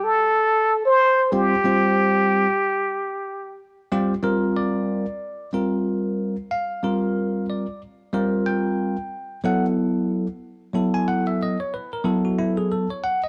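A plunger-muted trumpet, clear and wah-wah with light vibrato and scooped notes, plays an up-front jazz melody over the opening 3.6 seconds, joined at 1.3 seconds by a bell-like, bright tine electric piano with phaser that carries this funky, slick G minor excerpt at 92 BPM with a light swing through to 13.3 seconds, all in a dark production with light reverb.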